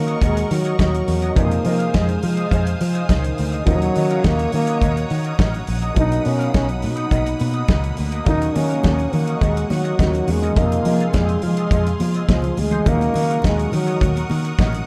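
A dark production with light reverb frames this short disco cut, taken from a longer piece, its mood danceable and driving in a straight four. Up front, a soul drum kit with a fat snare, tight kick and hi-hat carries a rolled-off top, while a picked electric bass sounds bright, amped and foam-muted beneath it. A breathy trombone carries the melody in an intimate, whispered jazz style, mellow with a soft attack. Around it, a grand piano sits in the background, a clean semi-hollow electric guitar adds picked accompaniment through a wah, and a bowed studio string section holds lush, biting chords with vibrato. Ringing, high-tuned congas, close and dry with hard hands, join very quietly at 8.3 seconds as the harmony cycles through Ebm7, Fm7 and Bmaj7.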